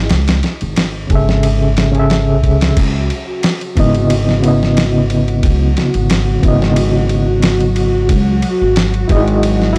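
A reed electric piano and a pizzicato upright bass open this brooding, hypnotic trip hop excerpt in C# minor at 90 BPM, joined almost at once by a dusty, sampler-style drum kit with a thumpy kick, a medium-tuned snare, ride and crash cymbals, all compressed and up front with a lightly swung sixteenth-note feel. The electric piano carries the accompaniment with a reedy, lightly overdriven tone, a fast tremolo, 12-bit sampler grit and tape echo, moving from Amaj7/G# to C#m9. The upright bass sits equally forward, woody and dark on gut strings with a touch of tube saturation. At 2.8 seconds a string machine voicing cellos enters on sustained chords, a full-bodied, sawtooth-edged pad with a soft attack, a sub octave and ensemble chorus, and the harmony settles on Emaj7 at 8.1 seconds. The whole mix is dry and gritty with transformer saturation, giving it a close, hardware-driven character.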